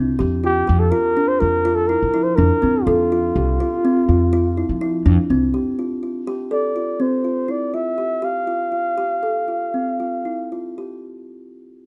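Contemporary chamber music in a restless yet hopeful 11/8 at 247 BPM in eighths, in F major tuned to A4 = 435 Hz, where a close, up-front hollow kalimba plays soft arpeggios throughout, a thumpy gut-string pizzicato upright bass anchors the first part before dropping out at 5.5 s, and a breathy, whispered, intimate flugelhorn carries a jazz-style solo melody with vibrato and scooped notes, all in light reverb with close, detailed miking as the piece slows from 7.0 s to the end.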